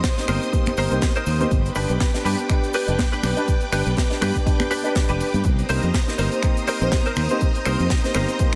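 A dreamy mix soaked in a huge ambient reverb opens this short nu-disco excerpt, giving its groovy 4/4 swing a cosmic, floating feel. Up front, a punchy, layered electronic kick sits beside a growly, overdriven fingered electric bass that enters at 0.3 seconds, while a dry, polished funk kit adds finger snaps, hi-hat and a high-tuned snare. Ringing cabasa and congas played with soft hands stay in the background. A bright, twangy clean electric guitar plays a compressed, picked riff through ensemble chorus and delay, and a lush vintage string machine holds sustained sawtooth chords with a slow attack and sidechain pumping. A dark, mellow grand piano joins at 0.2 seconds with long-sustaining accompaniment, also pumping and echoed by delay, as the harmony moves from Cm7 to G and back to Cm7.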